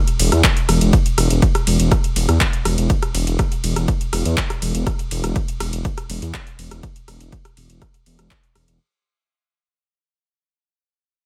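A swelling, detuned saw bass dominates this melodic techno excerpt, its unison sawtooth tone blended with sine weight and sitting up front between E1 and E2 as a menacing, evolving presence with a fast attack, sustained notes, a filter swell and sidechain pumping. Alongside it, a deep house drum kit opens the passage at 0.1 seconds, just ahead of the bass at 0.2 seconds, with handclaps, metallic hi-hats, ride cymbal and rim click, a layered, tape-tinged sound placed in a small room, with pumping on the hats and cymbals. An electronic kick drum arrives at 0.4 seconds, punchy and overdriven with an analog edge, also up front in the same small room. The track runs at a straight 122 BPM in 4/4, and the mood is driving yet melancholic. Cut from a longer piece, the passage lands as a drop from the very start and begins fading out at 0.9 seconds, all set in a digital ambience.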